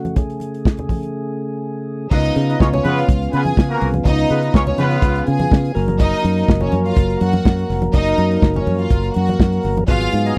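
A mellow tonewheel organ holding sustained chords through a slow rotary speaker and soft-handed congas in the background open this glamorous, joyful 124 BPM disco cut. A punchy, up-front soul drum kit with dark cymbals joins almost at once to drive it. Round fingered bass and floating bowed strings enter around 2.1 seconds, followed by distant horn stabs with vibrato around 2.5 seconds, all in a dry, close 1970s-style studio sound.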